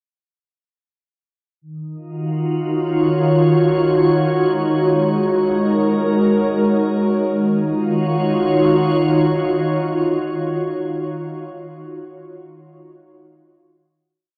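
At a slow 64 BPM in a straight 3/4, this short, complete ambient piece in Eb minor feels melancholic and serene. A solo FM pad with a glassy, ethereal tone, treated with ensemble chorus and its own reverb, sits up front from 1.6 seconds, moving through Ebm7 and Ab7sus4 with slow attacks and sustained, long-releasing chords. It settles back on a final Ebm7 at 7.2 seconds, held until 10.1 seconds in a dark production bathed in cavernous cathedral reverb.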